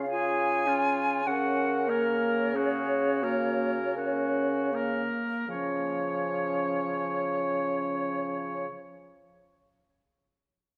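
A pure, metallic concert flute carries the melody with vibrato and a soft attack, sitting back in the blend as it moves between Db5 and Ab5 in this serene, lyrical slow movement for wind quintet. The music is in Db major and 3/4, with a rubato feel at 37-53 BPM, and it slows over its opening stretch. A clear French horn with light vibrato, a soft attack and a smooth top shares the accompaniment with a mellow clarinet, while a vintage-toned bassoon holds a Db3 bass with light vibrato. A distant, roomy oboe joins at 0.1 s on a second line, adding warmth and light vibrato. The harmony moves from Db to Gb over a Db bass at 1.3 s and settles back on Db as a new section begins at 5.5 s. A wet scoring-stage reverb with a 2.0-second decay surrounds the ensemble, and the passage is cut from a longer piece.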